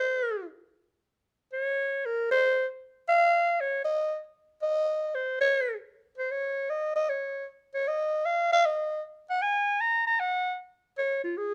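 Set in a light reverb, this short jazz cut from a longer piece has a late-night, moody air and a swung feel in 4/4. A lone clarinet stands up front for the full 11.5 seconds, its raspy, growling tone carrying a light vibrato as it moves between F4 and Bb5.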